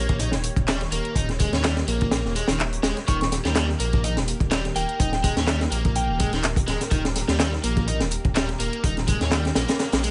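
Raw and energetic, this short breakbeat cut runs at 125 BPM in 4/4 with a light swing on the sixteenths, built over an Eb7 chord. A crunchy breakbeat kit sits up front with a punchy kick, a high-tuned snare and hi-hat, its acoustic small-room sound dark and rolled off at the top, while a tape-warm electronic garage kit adds layered handclaps and hi-hat in the background. A deep, rumbling detuned saw bass, saturated and beating, also sits up front, and an overdriven, double-tracked electric guitar plays a picked, compressed riff trailed by dub echo. Behind them a swirling phased analog pad holds sustained chords through phaser and chorus, carrying vintage 12-bit sampler grit and sidechain pumping. Between 3.1 and 6.3 seconds a crystalline FM synth bell adds a mellow melody, coloured by chorus, an AM radio tone and dub echo, before the kick drops out for the final moments from 9.8 seconds as this excerpt ends, all wrapped in studio reverb.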